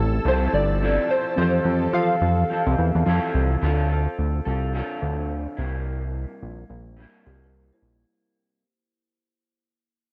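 Worn cassette tape with a warbling pitch drift and light reverb colours this nostalgic, sunny indie pop fragment, which swings gently in 4/4 and fades out from 3.6 seconds. Mellow, square-edged lo-fi synth keys carry the melody through chorus, plate reverb and analog delay until 3.3 seconds. They sit over a smooth vintage pad, a slightly out-of-tune tine electric piano and a dark, slightly broken-up electric guitar through a small old amp with subtle chorus and vibrato. A fat, detuned analog bass sits up front beneath them all, and a faint, woody kalimba with lush chorus adds a soft second line at 7.3 seconds.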